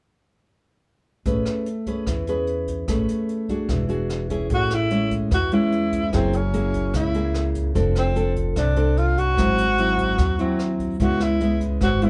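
A straight 4/4 bossa nova pulse at 148 BPM, carried by a brushed jazz kit with a boomy kick and rolled-off top, woody pizzicato upright bass and up-front, warm fingerpicked nylon-string guitar, sets a sunny, sophisticated mood in A major before a breathy tenor saxophone enters at 4.5 s with subtone, vibrato and scooped notes over rich jazz chords moving from Amaj9 to C#m7, all heard in a small room with moderate reverb.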